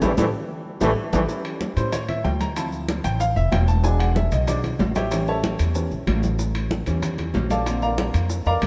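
A punchy, tight trombone section opens this passionate, driving salsa excerpt with a short band accent, its light vibrato cutting through up front before it drops out at 1.2 seconds. The clear baby grand piano carries on from 1.3 seconds into a solo with a natural, short-sustained tone, moving through A7, Dm7 and E7 before landing on Bbmaj7 near 7.7 seconds. Underneath, the upright bass sits prominently with a woody, dark, thumpy pizzicato sound from its gut strings. The congas add a bright, damped, hard-handed tone from the background, the timbales ring with a metal-shell edge, the round, low-tuned bongos stay very quiet, and the grainy maracas sit close and dry. A moderate plate reverb places the band a little further back in the room.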